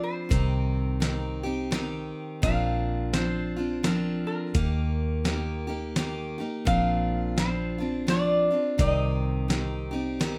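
Set in a moderately reverberant room, this nostalgic, down-home honky-tonk and classic country excerpt in a swung three-four lilt features a metallic, nasal lap resonator guitar soloing with a steel bar and fingerpicks over a full-bodied, up-front picked dreadnought acoustic guitar, while a round, foam-muted vintage electric bass and a gritty, compressed soul sampler-style drum kit with a thumpy kick and fat snare join at 0.3 seconds as the chords move through Cm, Bbadd9 and Eb.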